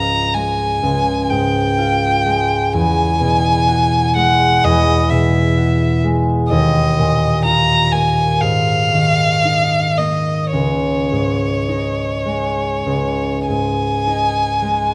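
This is an impressionist classical duo for violin and concert harp, luminous and dreamy in mood, moving slowly in 4/4 between 47 and 65 BPM with a rubato feel. The bowed violin carries the melody from Db5 to Bb5, its tone smooth and even with vibrato, captured close and up front as a single player. The concert harp accompanies across the full 14.9 seconds, its thumb-plucked notes ranging from Db2 to F#4 and ringing with a warm acoustic body that sits equally forward. The harmony drifts through open, suspended colours, opening on Dbadd9, passing through Eadd9, Ebsus2 and Absus2, and settling on Dbsus2 at 10.5 seconds. A moderate recital hall reverb surrounds the pair, and the passage is cut from a longer piece.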